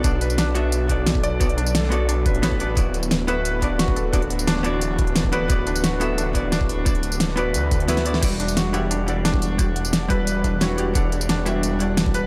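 This dry excerpt of liquid drum and bass feels dreamy and lush, riding a straight four-beat pulse. A knocking, tape-warmed electronic kick sits under a layered pop kit with a fat snare, crisp hats, crash cymbal and tambourine, both drum parts dressed in studio reverb and the kit pushed up front. Alongside them, a menacing, detuned sawtooth bass swells through its filter with a saturated edge, while a clean, dark hollow-body jazz guitar plays compressed, picked accompaniment through digital delay. A soft, felt-muted upright piano with audible action noise adds intimate arpeggios coloured by 12-bit sampler grit and delay, and a very quiet, airy pad with ensemble chorus and phaser holds bright sustained chords. The harmony moves from Bm7 to D69 at 2.8 seconds, then the kick drops out for a short drum fill at 7.9 seconds before the full groove returns on Em9 at 8.2 seconds.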